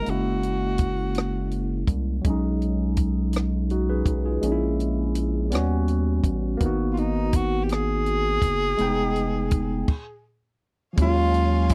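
Set in a slow, straight 6/8 at 55 BPM, this late-night, sultry R&B excerpt in Eb minor moves through lush extended chords, opening on Gb9 and passing through Bbm7b5, Eb7alt and Abm9. A compact cocktail drum kit sits up front with a punchy kick, dark cymbals, hi-hat, crash and rim click, while a round analog bass with a deep, square-and-sine filter pluck holds the low end. A barky tine electric piano, bright and lightly overdriven through a combo amp with a phaser, carries the accompaniment throughout. A breathy tenor saxophone with vibrato and scooped notes plays a brief jazz-style phrase at the start, then returns at 6.9 seconds, its tone touched by slapback echo. After a stop at 9.9 seconds, a rich bowed string section enters softly in the background at 11.0 seconds on an Ebm11 chord, all within a dry, close 1970s-style studio sound.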